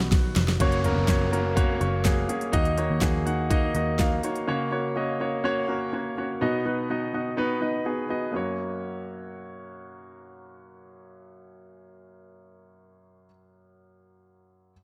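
A drum fill opens this hopeful, anthemic piano-driven pop cut from a longer piece, its layered electronic kit bringing a knocking kick, fat snare, crisp hats, handclaps, ride and toms up front, while a dark, foam-muted, round vintage electric bass adds punchy low end and a downlifter sits in the background. At 124 BPM in F# major, a clear, polished baby grand piano carries the chords from B through F# and D#m, staying present under a light reverb. The drums and effect stop at 4.5 seconds and the bass just before, leaving the piano alone until 14.7 seconds.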